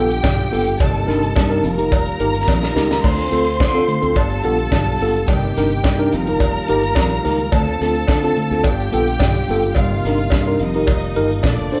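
Set in a moderately reverberant large room where the band plays together live, this glamorous, driving disco clip at 107 BPM is built on a tight funk drum kit with a high-tuned snare and a short fill at 2.5 seconds, a punchy, growly fingered electric bass, a mellow tine electric piano carrying the accompaniment, a round, dark tonewheel organ holding chords in the background, a lush bowed violin section with vibrato as the second line, and a metallic cowbell tucked behind, all cycling through G7, Cm7/G, F9sus4 and Dm7.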